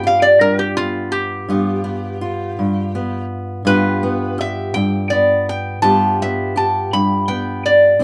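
A lap resonator guitar, worn with fingerpicks and played with a steel bar, carries a soulful, swaggering slide melody from the opening moment. A fingerpicked steel-string acoustic guitar with old strings gives a woody accompaniment beneath it. This short acoustic country blues passage moves at a slow 56 BPM in a straight 12/8 feel in G mixolydian, resting on a G7 chord, with the resonator's metallic, nasal tone up front in a modest small-room ambience.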